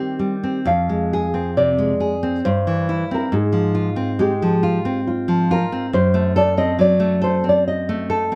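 A romantic classical duo for two nylon-string guitars, this brief, melancholic and solemn excerpt moves at a rubato 69 BPM in 3/4, its harmony passing from Cm/Eb through Fm, C/G and Fm/Ab to an F#dim7 at 5.9 seconds. One nylon-string guitar carries the melody between F4 and F5 with a full-bodied, thumb-plucked tone and audible finger squeak. The other, up front and fingerpicked with fresh strings, supplies the accompaniment from F2 to A4, and both sit in light reverb.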